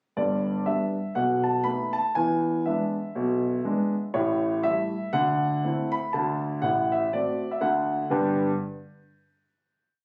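Heard through a phone in the room, a warm, up-front grand piano rings in a moderate club reverb on this short, complete stride piano piece in G major. At 121 BPM with a swung 4/4 feel, the solo piano, spanning G1 to B5, pairs a single-line melody with a stride bass, moving through B7, E7, A7 and D9 in an exuberant, playful mood. The playing stops at 8.5 seconds, and a final G chord lingers in the club's natural ambience until the end.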